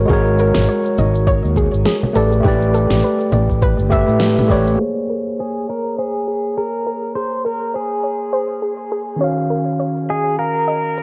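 A swung sixteenth-note groove carries this relaxed, wistful sunset chillout excerpt, built on a soft electronic kick, a fat electronic snare with shaker, and very quiet, close, dry congas played with soft hands. A growly, punchy fretless electric bass with subtle chorus anchors the opening beside a clean, up-front tine electric piano comping lush suspended and minor ninth chords, its tone roughened by vintage 12-bit sampler grit and trailed by tape echo and shimmer reverb. A dark, rounded synth pluck spins gentle arpeggios above it through chorus and the same echo and shimmer, and a filter sweep moves across it in the second half. After a band accent at 4.2 seconds, the bass, kick and congas drop out by 4.8 seconds, leaving the snare and shaker beside the electric piano and pluck, and a bright, twangy pedal steel guitar enters at 5.4 seconds with compressed, fingerpicked slide lines and volume swells. 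The whole recording has a gritty hardware character, with transformer saturation, cassette tape coloring, a low-pass filter and light reverb.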